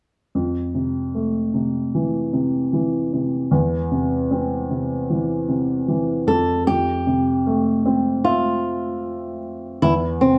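A straight 4/4 pulse at 76 BPM carries this tender, heartfelt pop passage in F major, tuned to A4 = 441 Hz, where an up-front, natural-sounding baby grand piano accompanies from 0.3 s over Fmaj7 and C/E until a boxy, fingerpicked acoustic flamenco guitar, finger squeaks audible, takes the melody at 6.3 s, the two playing together live in one room under a wet studio reverb in a clip cut from a longer piece.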